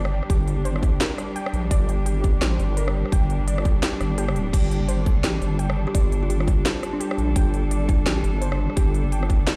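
Heavy and tense, this half-time drum and bass excerpt at 170 BPM in G minor, swung on the 16ths and resting on a Gmadd9 chord, pairs a deep, dark wobble bass up front, thickened with chorus and tube saturation, with a tight electronic kick and a layered kit of cracking snare, crisp hats, rim clicks and crash cymbal, both in studio reverb, while a nasal, earthy bowed cello section holds sustained chords with light vibrato, 12-bit sampler grit and sidechain pumping, a detuned, lo-fi pluck warbles through arpeggios in the background with chorus and delay, and a woody, mellow kalimba melody rings out with delay from 5.9 to 7.4 seconds, all sounding as if played on a big sound system in a bare room with large studio reverb.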